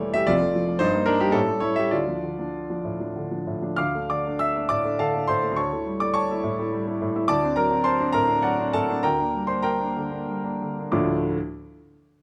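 A grand piano opens alone at 0.0 s in this brooding, stormy romantic character piece in triple time, its tone polished and close at hand, set up front in a lightly reverberant space. The rubato phrasing lets the pulse stretch and give, and the single instrument ranges from F1 in the deep bass up to F6. An opening phrase moves through Dm/F, Eb/G and A7 before settling on Dm, and a longer middle passage leans on A7/D, then D7 and Gm/D. At 10.9 s a short closing section returns to Dm, and the piano stops at 11.4 s. Close, detailed microphones catch the instrument's present, warm character, and the passage sounds cut from a longer work.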